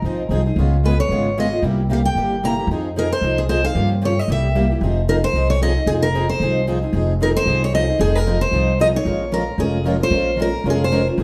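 A brisk swing feel at 226 BPM in 4/4 drives this fiery, bittersweet stretch of gypsy jazz in F minor, cut from a longer piece. Up front, a picked steel-string acoustic guitar with a concert tone carries the melody between Ab4 and Bb5, while the upright bass, plucked on gut strings, sits close by with a woody, thumpy sound. A bright parlour-style steel-string guitar picks an accompaniment from 0.1 s, and a boxy, plugged-in swing guitar adds further accompaniment deeper in the background. The harmony cycles through Fm7, Db7, C7 and Gm7b5 before the passage starts over at 4.8 s and later reaches Bbm9 at 9.1 s. A wet studio reverb places the ensemble a little further back in the room.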